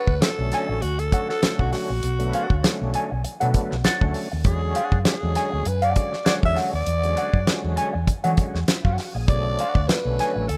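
A rough home-demo sound with light reverb frames this sly funk excerpt at 99 BPM in B dorian, swinging its sixteenths over a Bm9 to E13 vamp that returns to Bm9 at 9.3 seconds. Up front, a breathy, raspy alto saxophone carries the melody with vibrato and scooped notes, while a dry, damped 70s kit with a fat snare and tight kick sits beside it and a round, dark hollow-body bass anchors the low end. A clean semi-hollow guitar comps through wah and spring reverb, and a gritty, overdriven tonewheel organ adds stabs colored by chorus vibrato and a slow rotary speaker.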